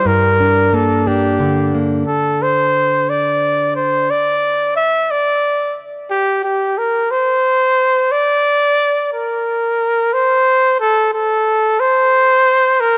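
Wistful and yearning, this folk fragment in 6/8 places a mellow, classically styled trumpet up front, its smooth top touched with light vibrato and an analog delay, over a full-bodied, fingerpicked jumbo steel-string guitar that stops at 4.1 seconds, leaving the trumpet alone in light reverb until the cut at 13.0 seconds.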